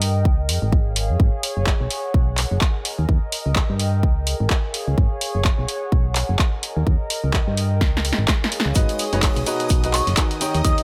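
Piano house at 127 BPM in G# dorian, this soulful, bittersweet clip rides a swung 16th-note groove. A punchy, layered electronic kick sits up front beside an analog drum machine with a tape-warm snare, claps and hi-hats, while a round, dark FM bass with tube saturation pumps against the kick. Underneath, a lo-fi, detuned pad of sawtooth and triangle tones warbles nostalgically with chorus and its own reverb, cycling through C#, G#7(no3), Bmaj7 and D#7. Near the end of a drum fill running from 7.8 seconds, a very quiet, loose indie kit adds a fat snare, hi-hat and shaker at 8.7 seconds, and at 8.8 seconds a woody, boxy upright piano riff with tape echo arrives over lush, vibrato-rich symphonic violins as the harmony settles on G#m7. A glassy, crystalline FM bell melody enters at 9.9 seconds in the background, all set in a small room with light reverb.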